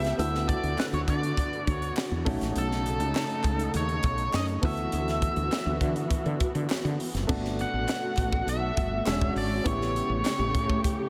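Slick and urban, this polished 1980s jazz-funk pop excerpt moves at 101 BPM in a straight 4/4, cut from a longer piece. Up front, a nasal, overdriven lead guitar with a parked wah carries the melody between A4 and F#5, over a woody, growly fretless bass and a crisp fusion drum kit with a high-tuned snare, tight kick, hi-hat and crash. In the background, a concert grand piano with audible action noise and a subtle chorus supplies accompaniment, while a veiled, con sordino string section holds lush, bowed chords with vibrato. A hollow group handclap, barely audible, enters at 0.8 seconds and drops out at 10.4 seconds. The harmony moves through rich chords such as D6, B9 and D69 before shifting at 7.3 seconds to Gmaj9, E13 and A7, all set in a dreamy mix soaked in a huge ambient reverb.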